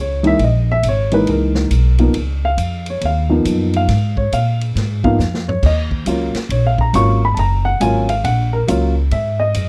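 Jazz piano trio in a relaxed, sophisticated swing at 138 BPM in Db mixolydian, with a dark, mellow upright piano soloing up front over chords moving from Gb13 through Db69 and Ebm7 to Ab7, its intimate tone carrying audible action noise. A woody pizzicato upright bass with steel strings sits close in the mix, while a vintage acoustic drum kit with a natural small-room sound, dark cymbals, a punchy kick and a rolled-off top enters at 0.2 seconds and adds a brief fill at 5.2 seconds. The dry, close 1970s-style studio sound frames this fragment of a longer piece.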